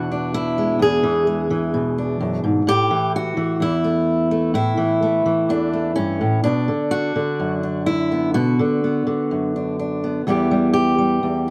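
Captured outdoors with a light touch of reverb, this short fragment of a longer piece places a single steel-string acoustic guitar up front in the mix. It is a solo folk performance, fingerpicked in a free, rubato 4/4 that gives the music a melancholic, reflective mood. The guitar's tone is warm with an auditorium-like fullness, and finger squeak adds a close, human detail. Its range stretches from a low E2 up to G#4 across the 11.5-second span. The harmony moves from E7 to A5, then to Bm at 6.4 seconds, and on to Em at 10.3 seconds.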